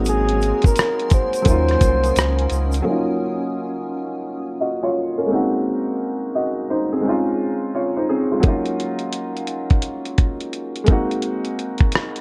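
A felt-muted upright piano softened by cassette tape, a blurred, full-bodied granular cloud pad and a round, deep sine sub bass open this reflective, hazy lo-fi hip hop excerpt at 86 BPM in Eb dorian, joined almost at once by a mellow jazz-style flugelhorn with light vibrato, scooped notes and tape echo, a gritty, compressed sampler-style drum kit with a thumpy kick swung on the 16ths, and a grainy tube shaker in the background, before the intimate piano carries on alone under a filter sweep from 2.9 seconds until the drums return at 8.4 seconds, over chords moving through Ab9, Ebm7 and Dbmaj9 in a dark production with small room ambience.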